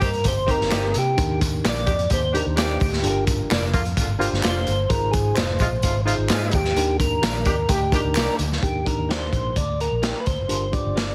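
An uptempo 1960s-style soul groove at 129 BPM in Eb major opens with a percussive tonewheel organ carrying the melody as a solo, its round, dark tone turning through a slow rotary speaker. Underneath, a crunchy breakbeat drum kit sits up front with a tight kick, medium-tuned snare and hi-hat, saturated and gritty with a rolled-off top. A foam-muted fingered electric bass adds a punchy, amped low end. A distant, roomy horn section plays a mellow second line, and group handclaps with a tube shaker sit in the background, both stopping at 8.5 seconds. A worn, slightly out-of-tune tine electric piano enters at 0.5 seconds through a combo amp, followed by a very quiet, slightly broken-up electric guitar playing picked stabs through a small old amp. Over chords moving from Cm7 through Ebmaj7, Gm7 and Ab6, the joyful, danceable excerpt has a heavily compressed radio sound with studio reverb.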